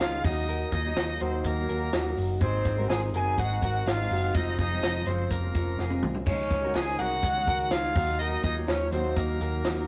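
This jangly indie pop excerpt moves at 124 BPM in a straight 4/4, with a bright, youthful mood over a progression of Ebm, Ab, Fm, Dbsus2 and back to Ebm. A rich, boxy solo violin carries the melody up front with focused, bowed vibrato. A clear trumpet plays a second line beneath it, punchy and vintage-toned with light vibrato and tube saturation. A mellow electric guitar plays clean, fingered arpeggios, while a fingerpicked steel-string acoustic guitar adds warm accompaniment in the background, and a hollow, flute-like pad holds very quiet sustained chords with a slow attack and chorus. A round, foam-muted picked bass anchors the low end, and a compact cocktail kit sits dry and up front, with a tight kick, high-tuned snare and dark cymbals, plus a drum fill from 5.8 to 6.3 seconds. The whole band sounds like a rough rehearsal-room take, with tube saturation and a wet stone-room reverb.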